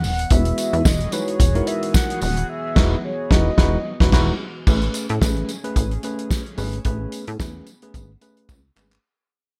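Early-eighties boogie funk at 110 BPM in 4/4, with a light swing on the sixteenths, this smooth, danceable excerpt sits in A lydian and moves from an Emaj9 chord to Amaj9 at 4.7 seconds. A damped 70s drum kit sits up front with a fat snare, tight kick, dark cymbals, handclaps and a gated reverb, joined by a jingly tambourine and a punchy, plucky analog bass with a filter pluck and a fast attack. A tine electric piano enters at 0.3 seconds, sounding worn and slightly out of tune, while a chorused pulse-width pad shimmers in the background with slow-attack sustained chords. A round, horn-like synth lead with vibrato and a warbling, detuned tone carries the melody until 4.4 seconds, with a band accent from 2.5 seconds. The second half fades out, and a drum fill closes the cut at 8.5 seconds, all in a dry, close-sounding mix.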